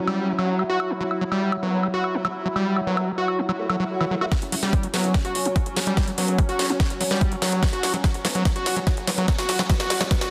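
Psychedelic trance at 145 BPM with an alien, psychedelic mood, where a screaming, squelchy distorted acid riff leads up front over a bubbling resonant texture of sustained chords under a filter sweep, a background formant-sweep wobble bass with tape echo, and a techno kit of cracking snare, metallic hats and woodblock, until a swell at 3.6 seconds gives way at 4.3 seconds to a punchy kick, a tight, nasal sequencer bass and a drum-fill build-up, all set in a lush hall reverb and a dense, heavily limited master.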